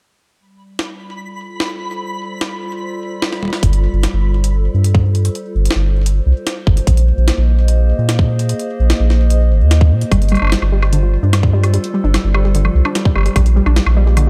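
A warbling, nostalgic tape-like pad with chorus and sidechain pumping opens this intricate, playful IDM passage at 148 BPM, joined almost at once by a gritty, pitched-up jungle sampler-style drum kit of hi-hat, snare, toms and woodblock and a brief twinkling granular shimmer, before a round, deep analog bass and a tight, up-front electronic kick arrive at 3.6 seconds after a short drum fill, and a lo-fi dusty pluck adds detuned arpeggios with 12-bit grit and digital delay from 10.1 seconds, all over dark G9sus4 and Bb9sus4 chords.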